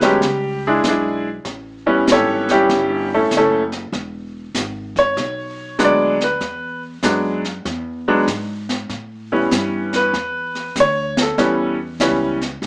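Heard through a small speaker in a moderate club room, this playful, sophisticated jazz piano trio passage, cut from a longer piece, swings at 97 BPM in 4/4, with a bright, up-front upright piano soloing over E7 and A7 chords with long sustain and plate reverb, a woody, thumpy pizzicato upright bass on gut strings underneath, and an airy, polished brush kit with a high-tuned snare and boomy kick.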